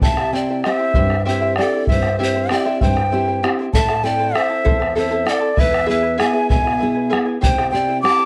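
An airy, tongued cane quena with slapback echo leads the melody up front in this earthy, festive Andean folk excerpt at 65 BPM in 6/8, joined by a breathy bamboo pan flute with vibrato and chiff on a second line, a shimmering fingerpicked charango in the background, a bright, full-bodied nylon-string guitar also sitting up front, and a deep, distant bombo, captured in a dry, close 1970s-style studio sound over C, Am and E chords.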